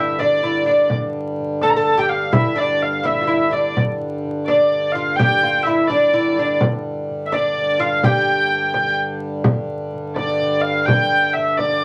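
Mysterious and ancient in mood, this medieval dance moves in 6/8 at 84 BPM counted in dotted quarters, with a straight feel and tuning set to A4 = 442 Hz. A dark, nasal hurdy-gurdy carries the melody up front, its wheel-bowed, keyed tone smooth at the top as a single player sounds high between D5 and Bb5. Beneath it, a plectrum-plucked fretless oud with woody double strings plays a second line in the middle register, falling away at 8.9 seconds. A hand-pumped harmonium holds a low, breathing drone throughout, sitting well back in the blend. A small, bright frame drum played with soft hands enters at 0.2 seconds, sounding close and dry. The whole piece sits in a wet studio ambience with a touch of vinyl crackle, and it is cut from a longer work, so its repeated opening section simply breaks off.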